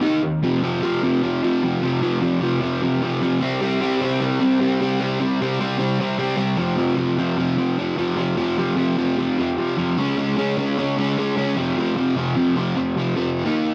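Aggressive and menacing, this short rock excerpt drives forward at 151 BPM in a straight 4/4, centred on F minor. A single overdriven semi-hollow electric guitar carries everything from 0.0 to 13.7 seconds, sitting up front with a bright, picked bite and a hollow-body resonance. The part is double-tracked, spanning F2 to Eb4, and passes through cassette tape coloration and an analog delay. Its power-chord moves run from an Eb5 stab at the start through F5, C5, F5 again and Db5 before landing back on F5 at 11.6 seconds. A wet small-room ambience and the grainy character of a home cassette recording give the performance a raw feel, and the excerpt is cut from a longer piece.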